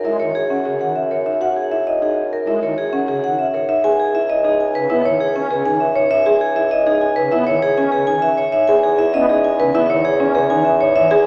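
Over a straight 4/4 pulse, this hypnotic, meditative passage of minimalist classical pattern music sets a metallic, ringing vibraphone melody up front over buzzing, woody marimba arpeggios played with soft mallets, a shimmering pipe organ accompaniment on celeste string stops, and a mellow, distant bassoon bass with light vibrato, the mix heard from further back in a wet scoring-stage reverb with a small-speaker sound.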